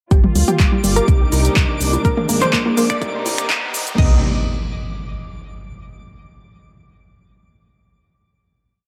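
A four-on-the-floor electronic kick drives this short progressive house piece in a straight 4/4, joined by programmed hats, shaker, claps, snaps and a crash from a deep house kit, while an overdriven tribal loop of electronic toms and congas sits in the background. Underneath, a round analog bass plays a driving eighth-note line with sidechain pumping, and a detuned, bright analog pluck repeats a sixteenth-note riff over a pedal note, coloured by chorus and delay. A lush, woody studio string section holds sustained chords, and a twinkling granular texture with an octave-up shimmer settles on a single held high note from 0.7 seconds. The passage is one long build, with filter sweeps on the pluck and strings over a Gm7, Cm7, Bb7, Cm7 progression. A riser and impact enter at 1.7 seconds and carry through the final chord that arrives at 4.0 seconds. The mood is expansive and dreamy, set in a dark production with light digital ambience.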